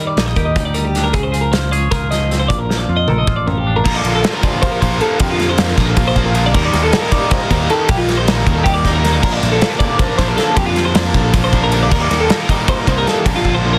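Math rock and midwest emo with a bright, playful feel in 7/8, where a clean, compressed twelve-string electric guitar picks arpeggios over a growly, punchy fingered bass and a loose, up-front indie drum kit with a pumping small-room sound, while a scooped, twangy electric guitar adds accompaniment until 5.2 seconds and a double-tracked, crunchy overdriven guitar riff enters at 3.8 seconds, both guitars before it carrying plate reverb, in this dense, heavily limited passage cut from a longer piece.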